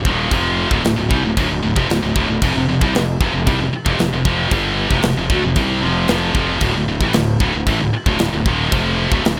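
A scooped, high-gain guitar stands up front, double-tracked and picked, hammering a distorted riff between D2 and C4 in this heavy, aggressive metal excerpt cut from a longer piece. Underneath, a fingered electric bass pushes fuzz and overdrive into a growly, punchy low end that sounds both direct and amped. A tight metal drum kit plays crash cymbal, snare and kick, with bright cymbals, a medium-tuned snare and a firm kick, and its acoustic sound is polished and airy with a big-room character. The music moves at 114 BPM in straight 4/4, in D minor with tuning at A4 = 438 Hz. The harmony shifts from Dm to F5 at 2.4 seconds and returns to Dm at 6.6 seconds. The overall mix is dry, with little reverb.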